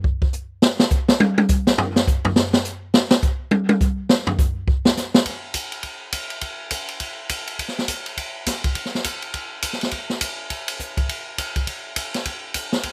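A swinging big-band drum kit opens with a solo, working across hi-hat, ride cymbal, snare, toms and kick at a brisk 206 BPM in 4/4 with a lively swung eighth-note feel. After the solo ends at 5.3 seconds, the kit carries a new section through to 12.9 seconds in this short, brassy-spirited jazz excerpt. The natural, acoustic sound sits up front and dry, with a punchy kick and a medium-tuned snare.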